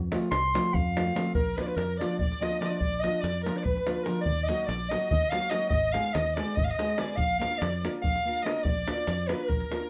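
A live band plays together in one room, caught in a wet studio ambience with a short tail, in this fiery, restless cut from a longer Balkan wedding-band folk piece in a straight 7/8 at 288 BPM, counted in eighths, in Bb phrygian dominant. A mellow clarinet sits up front, punchy and smooth on top, and takes a classical-style solo in the first 1.3 seconds before the music moves from F to Bb and on through Ebm and Abm. At 1.4 seconds a single bowed violin enters as a second line, rich yet a little boxy, singing with expressive vibrato and portamento. Underneath, a nylon-string guitar fingerpicks a full-bodied, deep classical accompaniment, and a tight davul drives the percussion with a small-room sound. A fingered electric bass anchors the low end, dark and round, with a direct, amped, foam-muted tone.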